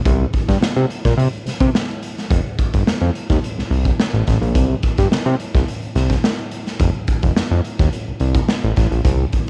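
A straight 4/4 funk groove with a playful, funky mood comes from a raw garage drum kit of punchy kick, medium-tuned snare and hi-hat, gritty and saturated with a rolled-off top and a cassette-tape tint in a bright, pumping stone room, paired with an up-front fat analog bass whose thick, detuned sawtooth tone evolves through a filter sweep, in a short excerpt of a home cassette recording with light reverb.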